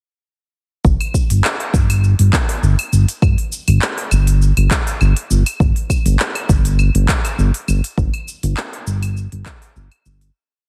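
A dry, heavily compressed, radio-like sound frames this short, mystical and earthy organic downtempo piece at 101 BPM in 4/4, with a light swing on the sixteenths. From 0.8 seconds a dark, up-front synth bass in sawtooth and square tones glides smoothly through a dotted rhythm, pumping under the deep, soft electronic kick. An organic layered beat of crisp hi-hats, cabasa, claves and handclaps joins them, and both the kick and this beat are tape-tinged and re-recorded in a large room. The groove fades out from 7.2 seconds.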